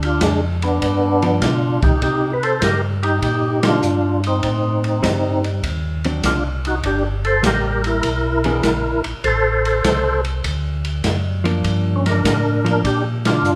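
This bluesy, smoky soul jazz organ trio excerpt opens with a percussive tonewheel organ carrying the melody up front, its fat, lightly overdriven tone marked by key click, second-harmonic percussion, chorus vibrato and a slow rotary speaker, while a mellow, round tonewheel organ holds down the bass through its own slow rotary and an acoustic drum kit swings beneath with dark cymbals, a medium-tuned snare and a boomy kick. A clean, compressed hollow-body electric guitar enters at 1.2 seconds with picked, dark accompaniment, and the band hits accents together at 3.5 and 13.1 seconds. The group plays live together in one room, heard through a large studio reverb.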